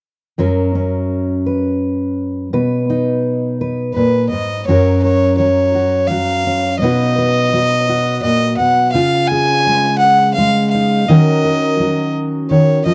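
A dry, close 1970s-style studio sound frames this peaceful, pastoral folk piece in 3/4 at 84 BPM in F# major, where a full-bodied, fingerpicked jumbo steel-string acoustic guitar sets the accompaniment from 0.4 seconds, joined up front at 3.9 seconds by a lone bowed fiddle whose airy, reedy, gut-string tone carries the melody over chords moving from F# and B to C#add9 and D#m7.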